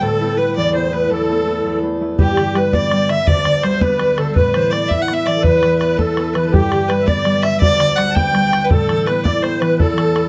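A dark, woody fiddle carries the melody up front, bowed by a single player with light vibrato and touched by a tape echo. This driving, spirited Celtic jig in 6/8 is cut from a longer piece. A close-miked musette accordion plays a second line, its reedy, shimmering wet tuning sounding dry and full. A mellow concert harp supplies the accompaniment with ringing, thumb-plucked tones, moving between Asus2 and G chords. At 2.2 seconds a damped, tight bodhran joins, close and dry, and it keeps the jig moving to the end. A small room lends a moderate touch of reverb to the whole ensemble.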